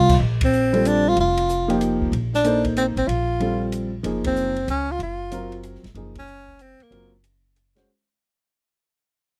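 A tenor saxophone leads this short cut from a longer modal jazz piece, its soft-attacked, scooped notes and vibrato sitting up front in a low register from Bb3 to F4 until it drops out at 7.1 seconds. The mood is open and hypnotic, swinging in 3/4 at a brisk 188 BPM over two chords, Bbmaj7sus2 and then Gbmaj9 from 4.0 seconds. Pizzicato upright bass gives a woody, thumpy pulse up front, while an acoustic drum kit in an airy small room adds crash, hi-hat and ride cymbals with a dark edge, a medium-tuned snare and a boomy kick. A concert grand piano enters at 0.7 seconds as warm, intimate accompaniment, with audible action noise and deep bass. The band accents together at three points across a fade-out, and the close, dry 1970s-style studio sound carries little reverb.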